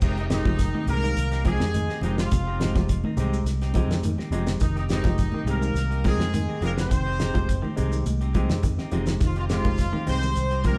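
An intense, driving afrobeat excerpt in F minor at 104 BPM opens with a brilliant, punchy horn section carrying the melody over a veiled, cup-muted trombone section's second line, tremolo arpeggios from a slightly broken-up, twangy electric guitar, clean guitar stabs, a round, dark fingered bass and a dry 70s drum kit with a fat snare and tight kick, both up front, while very quiet, close and dry high-tuned congas play and a grainy shekere sits in the background, a very quiet vintage alto saxophone adds a second line and a barky, lightly overdriven tine electric piano fills in accompaniment, all played live in a large studio room, with a drum fill at 8.1 seconds.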